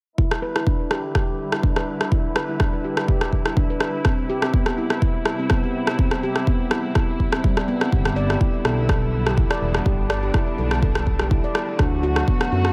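Lightly reverberant and tape-tinged, this hypnotic, spiritual afro house excerpt sets a ringing, meditative handpan playing close-miked arpeggios with tape echo over veiled, distant con sordino chamber strings under a filter sweep, both pumping against a deep, up-front electronic kick and layered rim click through an Em7, Cmaj7, G6 and D progression, until a smooth, evolving sawtooth synth bass with vibrato joins at 7.9 s.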